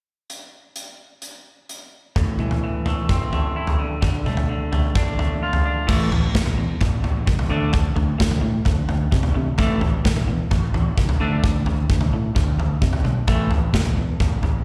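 Quiet-loud alternative rock in A minor at 130 BPM, dark and angsty, heard as a live gig through the venue's PA with recital hall reverb, cut from a longer piece. A big, up-front acoustic drum kit with bright cymbals, a punchy kick and a medium-tuned snare opens alone at 0.3 seconds, joined at 2.2 seconds by clean, twangy electric guitar arpeggios with slapback echo over Am and Dm. At 5.9 seconds a growly picked electric bass enters in the background as the harmony shifts to alternating A5 and D5 power chords.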